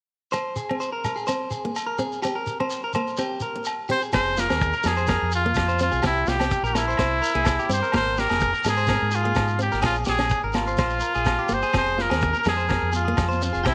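Highlife guitar band music with a danceable, swung feel, cut from a longer piece: a picked acoustic guitar with audible finger squeak and a clean, compressed electric guitar playing arpeggios through slapback echo open over ringing agogo bells and a grainy, mellow shekere. At 3.9 seconds a bright, punchy trumpet takes the up-front solo melody with vibrato, and by 4.1 seconds a dark, round fingered electric bass and a vintage drum kit with a kick and a high-tuned snare join in. Distant, thin-skinned congas slip into the background at 11.7 seconds, and the band sits in light reverb and small room ambience.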